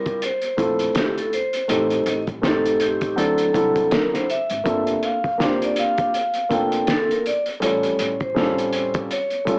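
Smoky and mellow, this jazz-hop excerpt in D minor moves at 81 BPM with a swung 16th-note feel, a dark vibraphone carrying the ringing melody over a dark grand piano whose intimate chords, taped and up front, reveal audible action noise as they pass through Dm11, Am7b5, D7, Gm11 and A7alt. A cloth-damped drum kit enters at 0.1 seconds with a fat snare, tight kick and hi-hat, muffled and gritty from cassette tape, and a woody, growly pizzicato upright bass joins low in the mix at 0.6 seconds. The whole has the feel of a home cassette recording, with vinyl crackle, a small-speaker sound and a moderate studio reverb.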